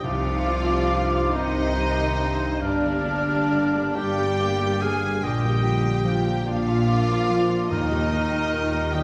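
Heard from further back in a reverberant scoring stage, this excerpt of a moving, bittersweet orchestral film cue drifts in C minor at 47 BPM in a rubato 6/8, passing through Cm, Gm, Bb and Eb across its 9 seconds. A close, intimate violin section carries the melody with light vibrato, alongside a clear, vintage-toned solo oboe, a darker, woody second violin section and a mellow, roomy clarinet in the background. Beneath them, a very quiet viola section, a grand piano with deep, open bass, a soft-attack French horn section holding chords, faintly ringing fingerpicked harp arpeggios, a pure, floating cello section and a lush, distant double bass section fill out the texture.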